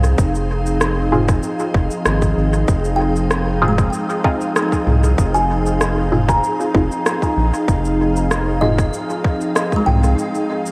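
Ambient dub at 96 BPM in F minor, meditative and deep, built on a single Fm7 chord. A pure, detuned organ-like pad with ensemble chorus and 12-bit sampler grit holds sustained chords over a round, dark analog bass and a tight, overdriven electronic kick. An overdriven organic electronic kit of cabasa, rim click and toms trails dub echo, while a muted, phased chord stab sits in the background and a woody kalimba enters at 3.0 seconds with delayed arpeggios, all inside a dreamy, reverb-soaked mix with vinyl crackle before a brief break at 10.2 seconds.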